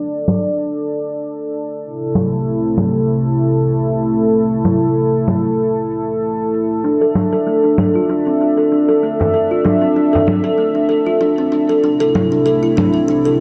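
Organic downtempo at 96 BPM in 4/4, this hypnotic, meditative passage is cut from a longer piece, with a light 55% swing on the sixteenths and tuning set to A4 = 444 Hz. A smooth, mellow analog pad built from sawtooth and triangle tones with a sub octave holds sustained chords up front, its slow attack colored by chorus, as the harmony moves between D5 and Am/C. Shaker and congas run through nearly the whole passage with an electronic, produced character, overdriven and re-recorded in a large room, then darkened by low-pass filtering. At 6.8 seconds a close-miked kalimba enters with ringing, woody arpeggios plucked with the thumbnail, its hollow-box tone trailed by tape echo. A soft-handed acoustic frame drum from a small room adds a brief touch between 9.2 and 10.3 seconds. A filter sweep spans the whole passage, and the gritty, dry hardware sound sits under light reverb and digital ambience.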